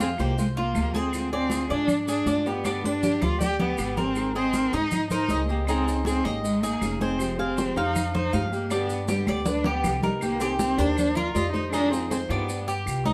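A dark, bowed cello carries the melody up front, its expressive vibrato and portamento giving this sultry, nostalgic Cuban son and guajira excerpt its lead voice at a brisk 158 BPM in straight 4/4. Alongside it, the tres picks bright, metallic arpeggios on its doubled strings, while a fingerpicked flamenco guitar traces a soft second line in the background, finger squeaks audible. A small-sounding nylon-string guitar adds accompaniment, and a woody, thumpy pizzicato upright bass anchors the low end. Warm, damped, high-tuned congas played with soft hands sit close, with grainy maracas further off and woody claves joining at 0.2 seconds. Percussion fills arrive around 2.6 and 9.3 seconds, and at 10.2 seconds the harmony turns through Cm7, Eb and Fm7 to a G7, all captured as a band playing live in one room with moderate studio reverb.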